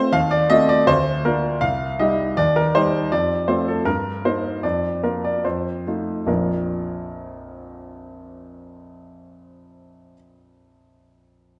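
A classical-period piano sonatina in Bb major, playful and elegant, moves in a straight 2/4 at 70-81 BPM on a solo baby grand piano whose clear, natural, up-front tone and short sustain sit inside a wet recital-hall reverb with a softened top end, slowing down from 2.4 to 6.3 seconds before settling on a Bb chord in this brief passage cut from a longer piece.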